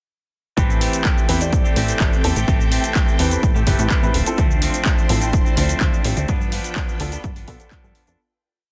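At 0.6 s this groovy, funky filtered disco house piece in A minor drops in at 126 BPM, with a punchy, overdriven four-on-the-floor kick up front and an overdriven analog drum machine pumping its shaker, open and closed hats and backbeat claps. A plucky sawtooth-and-square bass plays a syncopated, ring-modulated line, while a bright, clean semi-hollow guitar strums sixteenths in upper chord shapes and a dark, mellow grand piano adds a phased, rootless chord riff over Am7, Dm7 and G7, both pumping with the sidechain. A swirling vintage string machine holds sustained chords in the background through chorus and phaser, and the dense, heavily limited mix fades out from 5.7 s, with the kick dropping away at 7.8 s.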